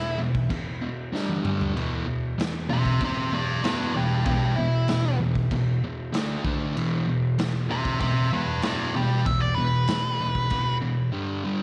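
A double-tracked fuzz guitar riff and a picked octave-fuzz lead melody open this raw, gritty garage rock excerpt together, both distorted, dark-toned and placed up front in E minor. The raw garage drum kit enters at 0.3 s, an acoustic kit with a punchy kick, a medium-tuned snare, crash cymbal and toms, heard in a bright stone room with a smooth, rolled-off top. A drum fill from 1.1 to 1.8 s marks the move from E5 to G5 and back. The band sits at a straight 96 BPM in 4/4, with a brief shift to D5 before the harmony returns to E5. The lead melody stops at 10.8 s, leaving the picked riff to carry on briefly before the fragment cuts off.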